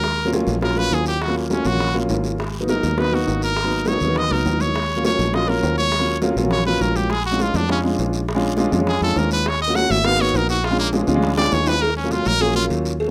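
A driving, straight 4/4 groove at 204 BPM sets this fiery Afro-Cuban jazz passage in Eb minor, cut from a longer piece. Tight, high-tuned bongos and cowbell sit distant in the background alongside ringing congas that are very quiet in a large room and a raspy guiro heard close and dry. A dark, round fingered electric bass, direct and amped, anchors the harmony as it moves through Ebm9, Abm9 and Bb7#9. A grand piano enters at 0.2 seconds with intimate accompaniment, its action noise audible. Up front, a brilliant, forceful trumpet solos with punchy attack, scooped notes and light vibrato, ending at 12.6 seconds, shortly after a drum fill at 11.4 seconds. The rough home demo mix carries light reverb.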